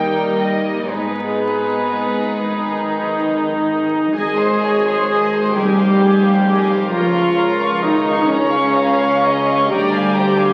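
Yearning and solemn, this slow romantic orchestral passage in G# minor drifts in a rubato 6/8 at roughly 34-45 BPM, cut from a longer piece. Soft-edged violins carry the melody in the background while a clear second violin line floats alongside, with pure sul tasto violas up front and dark, intimate cellos and very quiet basses anchoring the low end. Distant, mellow French horns hold chords until 3.8 seconds before a close-miked tuba joins the bass at 4.2 seconds, all heard through a recital hall's wet reverb on a very old, crackling 78 rpm record.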